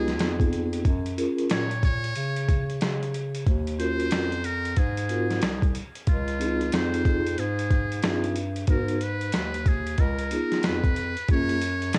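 Jazz-hop with a smoky, mellow mood at 92 BPM in 4/4, swung on the sixteenths and tuned slightly flat, drifting through lush chords such as Db7, Gbmaj7, Ebm9 and Ab13 in this short cut from a longer piece. A buzzy, metal-muted trumpet carries the melody with soft attacks, light vibrato and tape echo, while a vibraphone played with soft mallets rings out its accompaniment through fast motor vibrato in a boxy small room, and a dark, subtoned bass clarinet sits up front with scooped notes and tube saturation. A gritty, pitched-down, compressed boom bap kit with a thumpy kick joins at 0.1 s, re-recorded in a large room and placed up front, all captured as a dry home cassette recording.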